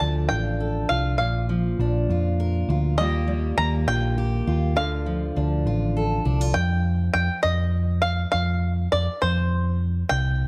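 Wistful and bittersweet, this short indie folk passage, cut from a longer piece, moves in a lilting 6/8 with a straight feel and a sense of an arrangement beginning to build. A twangy, percussive bluegrass banjo played with fingerpicks carries the melody up front, sitting in a warm upper register. Beneath it, a full-bodied dreadnought steel-string acoustic guitar is fingerpicked with audible finger squeak, supplying the accompaniment until it drops out at 8.3 seconds. A dark, round hollow-body short-scale electric bass, picked and amped, anchors the low end and is the loudest part in the mix. The harmony moves from Dm through Bb and a shaded Ebadd9 back to Dm, then opens onto Fsus2 as a new section begins at 6.6 seconds. Light reverb and a small room ambience give the ensemble an intimate, close setting.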